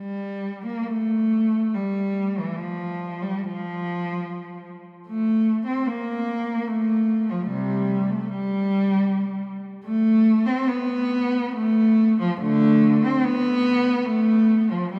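A single bowed cello is heard first, playing solo for the whole 15 seconds in this yearning, lonely classical fragment cut from a longer piece. The piece is free and expressive, moving in three with a flexible rubato feel that lets the phrases breathe. The cello stays in its lower-middle register, between C3 and C4, its warm tone shaded with vibrato and gliding portamento between notes. The instrument sounds distant, as if heard from further back in a church, where a wet reverb lingers for several seconds and surrounds the one player with a cavernous, spacious wash of sound. That long, resonant tail deepens the sense of solitude in the playing.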